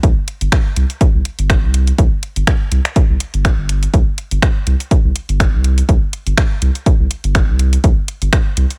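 Minimal techno at 123 BPM in 4/4 with a light 16th-note swing, this sparse, hypnotic fragment is cut from a longer piece and sits almost entirely dry. A punchy, analog kick drum and a deep, saturated triangle sub bass, sustained with a fast attack and pumping under sidechain, sit up front from the start. A layered garage drum kit adds finger snaps and bright hi-hats lower in the mix, and the kick stops at 8.4 seconds, just before the bass and kit run out.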